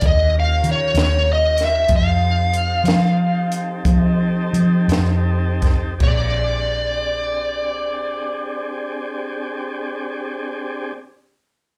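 Gritty and rollicking, this slow blues in 12/8 moves at 52-65 BPM on a straight feel in Bb mixolydian, heard as a fragment of a longer live club performance. An overdriven, bright lead guitar sits up front carrying the melody with a slapback echo, while a foam-muted vintage electric bass, round and amped, anchors the low end. Underneath, a smooth tonewheel organ holds sustained chords through a slow rotary speaker with vibrato. A compact cocktail kit plays dry, with dark cymbals, a high-tuned snare and a punchy kick. The tempo slows from 0.6 to 6.0 seconds as the chords move from Eb9 to F9, and the drums drop out at 6.2 seconds, leaving guitar, bass and organ to settle on a Bb13 chord. The sound carries the feel of a gig heard through the venue's PA, with a touch of club reverb around it.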